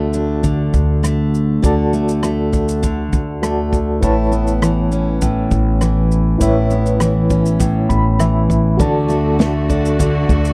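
A picked steel-string acoustic guitar, full-bodied and up front with audible finger squeak, plays from the start of this sunny, heartfelt acoustic pop piece in D major at 101 BPM. Alongside it from the outset come a woody, thumpy upright bass, a natural country drum kit with punchy kick, rim click, shaker and snare, and a reedy electric piano with fast tremolo that plays a fill at 7.6 seconds, all in a dry, close 1970s-style studio sound. At 8.8 seconds, as the chords return from Aadd9 to D, a bright, lush bowed string section enters with sustained chords to close out the passage.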